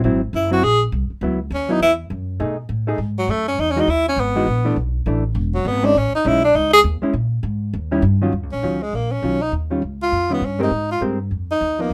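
A clear, close-miked tenor saxophone leads this moody, late-night small-group jazz fragment, entering at 0.4 s with a soft attack and vibrato in a solo voice that sits up front. Beneath it, a dark, clean hollow-body electric guitar plays fingered accompaniment, while a woody pizzicato upright bass with steel strings holds down the low end from the first beat. The tune swings briskly at 202 BPM in 4/4 in G# minor, moving through rich chords such as C#m11, Emaj9 and Amaj9#11 before settling into a new passage at 8.3 s built on Ebm9, Eb9 and Abmaj9. Light reverb gives the trio a touch of room, keeping the saxophone, guitar and bass close and intimate. The performance is cut from a longer piece, ending at 11.9 s.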